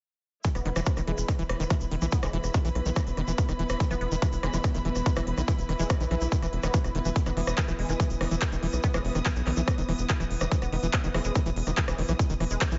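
A punchy, up-front electronic kick drives this alien, hard-pushing psychedelic trance excerpt at 143 BPM in straight 4/4, joined by a big-room dance kit of crisp hi-hats, handclaps and rim clicks, a grainy tube shaker, and a tight sawtooth sequencer bass, while a squelchy, distorted acid bass riff with delay, a smooth bowed string section with vibrato and a pulsing, gated chorus-soaked texture all pump under sidechain, and a very quiet, juicy blip pluck with ring modulation and phaser adds a second line from 0.6 seconds, all inside a light digital ambience.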